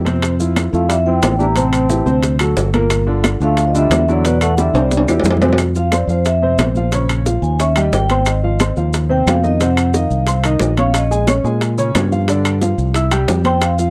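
Sunny and danceable, this dry, close 1970s-style Afro-Cuban jazz excerpt at 179 BPM sets a smooth, short-sustained vintage grand piano and an up-front fingered electric bass over tight, hard-handed bongos, soft-handed congas, ringing metal-shell timbales, woody claves and grainy maracas, while a metallic vibraphone carries the melody from 0.7 seconds beside a bright trombone second line that stops at 5.2 seconds, and the vibraphone takes a solo from 5.6 seconds.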